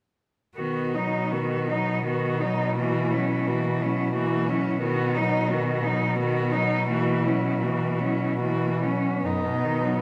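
A rich, bowed cello sings the melody with vibrato and gliding portamento, its phrasing expressive and tender across a serene classical passage for four cellos in a lilting three-beat metre with flexible rubato. All four cellos enter together at 0.6 seconds and play through to 10.0 seconds. A second cello weaves a focused inner line beneath it, its upper notes smooth and touched with vibrato. Below, a clear, distant-sounding cello supplies an even accompaniment, while the bass cello, placed up front, sustains a single low note with expressive vibrato and portamento. The harmony rocks gently between the home chord and a dominant seventh over the held bass, settling with an inverted tonic chord at 9.2 seconds. A wet recital-hall reverb wraps the ensemble in a lingering glow, and the fragment is cut from a longer piece.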